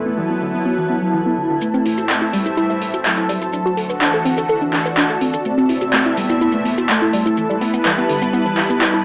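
A lo-fi, AM-radio-tinged cassette sound with light reverb frames this hypnotic, driving melodic techno cut from a longer piece at 125 BPM in A dorian. A fat, detuned analog lead with vibrato carries the melody under a filter sweep, over a lush unison pad, a woody wave-folded pluck arpeggio with analog delay and a blurred granular cloud pad. A faint plucky analog bass stops at 1.6 seconds, where an up-front, overdriven deep house kit with metallic hats and handclaps enters alongside grainy maracas for a build-up over Am, D and Esus4.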